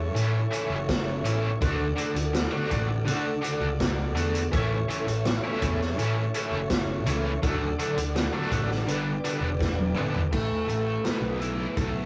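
A rough rehearsal-room recording with a short, wet booth ambience frames this trippy, kaleidoscopic psychedelic rock fragment at 83 BPM in A mixolydian, moving through A, D and G before landing on Asus2 at 10.3 s. Up front, a bright, double-tracked cranked guitar riff with overdrive and harmonic tremolo sits over a round, dark fuzz bass, while a vintage acoustic kit with a punchy kick and dusky cymbals drives the straight 4/4 and rolls into a fill at 9.6 s. Beneath them, a soft, flute-like tonewheel organ with key click and percussion holds sustained chords through a fast rotary speaker until 10.3 s.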